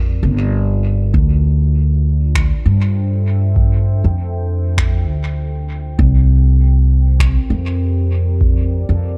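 Hazy and meditative, this ambient dub excerpt moves at 99 BPM in D minor with a loose 16th-note swing. A deep, moody pad built from detuned sawtooth and sine layers with a sub octave, wave-folding and ring modulation fades in across the whole passage, holding sustained chords under chorus and its own reverb. An up-front upright bass plays pizzicato on gut strings, woody and thumpy, thickened by tube saturation. A dry, analog-style electronic kick enters at 1.1 seconds, and tape-toned finger snaps, re-recorded in a small room and trailed by dub echo, join at 2.4 seconds. The harmony shifts from C9sus4 to Dm11 and back to C9sus4, all within a dark, warm digital ambience.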